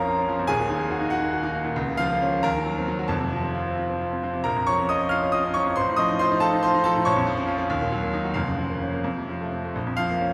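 Rubato phrasing in 6/8 sways around 85-96 dotted-quarter beats in this agitated, passionate classical study for solo piano, a short passage cut from a longer piece. A concert grand carries the whole thing alone from 0.0 to 10.3 seconds, ranging from Eb1 in the deep bass up to F6 in a bright, brilliant treble. In Bb minor, the harmony presses through Eb minor, a diminished chord and F before settling back on Bb minor at 9.8 seconds. The piano sits up front with a natural tone, while a wet concert hall reverb with a 2.1-second decay gives the virtuoso writing a spacious, resonant setting.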